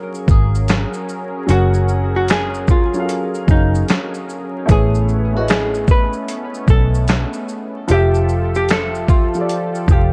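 Lo-fi hip hop at 75 BPM with a dreamy, nostalgic feel and a swung 16th groove, where a clean, hollow-body archtop guitar carries the melody through low-pass filtering and tape echo over a woody, slightly detuned upright piano, a smooth chorused analog pad, a round, foam-muted electric bass entering at 0.3 seconds, and a gritty, compressed sampler-style kit of thumpy kick, snare, hi-hat, shaker and handclaps starting at 0.1 seconds, all drifting through F#maj9, Amaj9 and Fmaj9 in light reverb and vinyl crackle in this short excerpt.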